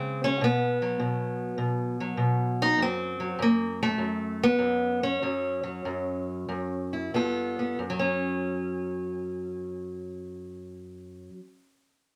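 Rollicking and gritty, this short cut from a longer piece of acoustic country blues rides a swung feel in 4/4. A lone fingerpicked steel-string acoustic guitar carries everything from 0.0 to 11.5 seconds, its dark, boxy parlour tone sitting up front in the mix. The tuning sits at A4 = 435 Hz. The playing moves through B5, F#5 and G9 chords, and the pace eases off from 2.8 to 7.8 seconds before the passage shifts into a new section where the chords drop away. A moderate studio reverb lends the guitar a modest sense of room.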